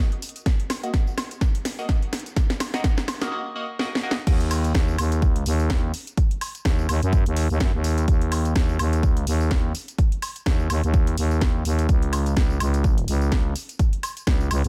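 A growling, thick FM bass with overdrive and sidechain pumping drives this bouncy, aggressive bass house excerpt in Eb minor at 126 BPM, arriving up front when the drop hits at 4.3 seconds. Before that, a nasal, band-passed sawtooth chord stab with phaser, 12-bit sampler grit and delay rides a filter sweep through the build-up, alongside drum fills and a short break. A house drum kit with a cracking snare, hi-hat, crash, tambourine and woodblock opens the excerpt, joined moments later by a punchy, tape-warm electronic kick that sits up front. Both are re-recorded in a large room, while the overall mix stays dry with a swung 16th-note feel.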